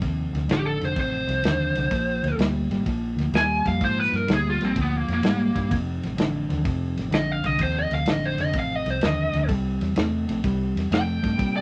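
Swaggering and soulful, this electric blues shuffle moves at 127 BPM in 4/4 with a swung eighth-note feel, set in F mixolydian and cut from a longer piece. A dark, clean electric guitar carries the riff in its low register from the start, alongside a round, punchy, foam-muted fingered bass and a dry soul drum kit whose tight kick, medium-tuned snare and dark ride cymbal sit under a rolled-off top. At 0.5 seconds the lead guitar enters through a small cranked amp, its overdriven, picked tone sitting up front as it solos across a range from Bb3 to Ab5. The chords move from F7 to Bb7, back to F7 at 5.7 seconds, and reach C7 at 9.5 seconds. Light reverb gives the mix a touch of space.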